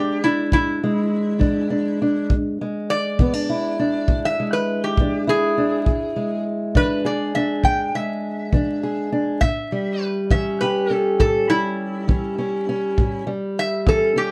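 A metal-body resonator guitar played with a steel bar and fingerpicks opens this gritty, laid-back acoustic country blues excerpt, carrying the melody with a bright, nasal, metallic bite. Beside it, a fingerpicked steel-string parlour guitar supplies a boxy accompaniment from the low register, and both guitars sit up front in the mix. A small-room kick drum played with brushes joins at 0.5 seconds, adding a punchy pulse to the unhurried, straight 12/8 feel. The harmony rests on E7 before moving to A7 at 9.4 seconds, and the slide guitar takes a solo across the whole passage. Light reverb and a dark, warm production with vinyl crackle give the recording a worn, old-time character.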